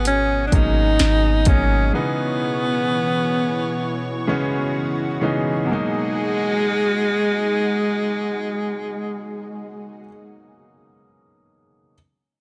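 A slow, straight 4/4 pulse at 64 BPM opens this moody, longing contemporary R&B piece in G# minor, as an overdriven electronic drum kit with a soft kick and sharp snare and a deep, boomy 808-style bass sound only within the first 1.9 seconds. Over G#m7 and C#m7 chords, a clear alto saxophone plays an up-front, jazz-style solo line with vibrato through a digital delay, while a vintage grand piano and a lush, detuned unison pad with chorus hold the harmony. In the dry mix, the piano rings on alone until 11.9 seconds.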